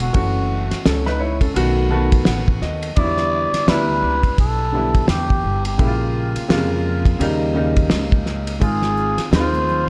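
A swung sixteenth-note groove in 4/4 from a cloth-damped, thuddy drum kit with a fat snare and dark cymbals carries this smoky, mellow jazz-hop excerpt, where a cup-muted trumpet plays a breathy, growling solo melody through analog delay over an intimate grand piano, which adds a fill between 1.6 and 3.0 seconds, and a woody pizzicato upright bass, before egg shaker and congas enter in the background at 8.6 seconds.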